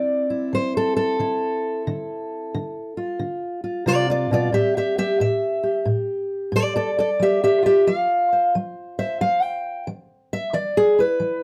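A swing on the eighths in 4/4 carries this soulful, brooding excerpt of acoustic country blues, where a lone fingerpicked steel-string guitar, woody and dark with the worn tone of old strings, sits up front in a modest small-room reverb and passes from Dm9 through A5 and F5 to E across its 11.4 seconds.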